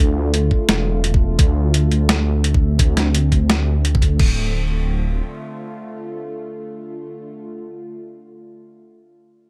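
A half-time drum and bass groove at 171 BPM in 4/4 carries a 16th-note swing, setting a tense, cinematic mood in D minor on a single D minor chord, in a short passage cut from a longer piece. A string-like, bowed-like drone holds sustained chords from the start to 7.3 seconds, its slow attack and long release colored by built-in reverb, phaser, vibrato, vintage 12-bit sampler grit and sidechain pumping, while a filter sweep moves across it through the opening section. Beneath it, a deep, rumbling detuned saw bass with a beating, saturated edge sits up front until 5.2 seconds. A boom bap sampler-style kit of crash, hi-hat and a medium-tuned, overdriven snare enters at 0.3 seconds, joined by a knocking, tape-toned electronic kick, both close and dry, sounding re-recorded in a small room before dropping out together. The drone carries on alone in the closing moments, leaving a hazy, warbling tail over an otherwise dry mix.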